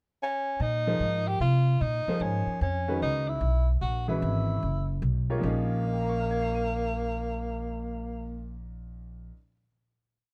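Modal jazz in a swung 3/4 at 149 BPM, hypnotic and cool in Bb dorian, this short whole piece opens with a tenor saxophone pickup at 0.2 seconds, its distant, roomy tone carrying vibrato and plate reverb as it states a motif-based melody in sentence-like phrases over Bbm11 and Dbm11 before settling on a final chord at 5.4 seconds. An upfront upright bass enters at 0.6 seconds with a thumpy, woody pizzicato walking line on gut strings, and a clear upright piano joins at 0.9 seconds with smooth, vintage-sounding syncopated comping in quartal voicings and short sustain. Light reverb and a dark production frame the trio.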